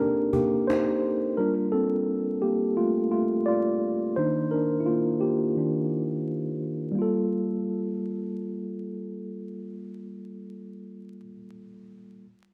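A rough home-demo sound, dusted with vinyl crackle and a lush hall reverb, frames this nostalgic, melancholic lo-fi hip hop excerpt in G minor at 86 BPM, with a loose 16th-note swing. A woody, distant cajon played with soft hands and faint snares opens the piece but drops away by 1.1 seconds. From the very start, the mellow, clean tine electric piano sits up front with a cassette-tape colour, taking a solo through 7.0 seconds over Cm9, Gm9 and Ebmaj13 before settling back onto Gm9 as the music moves into a new section.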